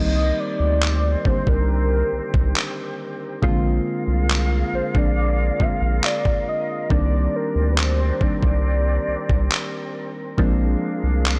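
A velvety, detuned synth lead with chorus and vibrato sings a longing melody over soft, tremolo-tinged electric-piano-like keys, distant pure-toned flute chords and a round, deep analog bass up front, joined at 0.8 seconds by a gritty, thumpy sampler-style soul drum kit of kick and handclaps, in this sensual contemporary R&B excerpt at 69 BPM in C minor that moves between Cm9 and Bb7 under light reverb before the lead falls silent at 10.0 seconds.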